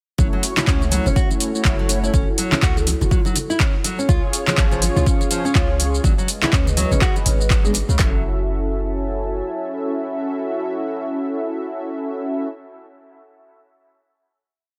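Afro house at 123 BPM in F# minor, driving and earthy, with a 16th-note swing and a dry, close sound. An overdriven electronic drum kit sits up front with a deep four-on-the-floor kick, woody snare and claps, while a second overdriven kit adds metallic hats, shaker and a programmed backbeat, and acoustic congas interlock in the background, all from 0.2 to about 8 seconds. A boomy 808-style sine bass plays a dub-style line under a fingerpicked nylon-string guitar, whose 12-step loop drifts against the bar with dub echo, as both pump against the kick. Mellow, detuned sawtooth synth brass punctuates with syncopated chord stabs in drop-2 voicing, and a dark, moody analog pad with phaser and chorus enters at 1.0 seconds beneath them, carrying the harmony from F#m7 through C# and G#m7b5. An airy, hollow bansuri offers short answering phrases with echo early on, and after 8.0 seconds the brass and pad hold a final F#m7 chord to the close at 12.5 seconds.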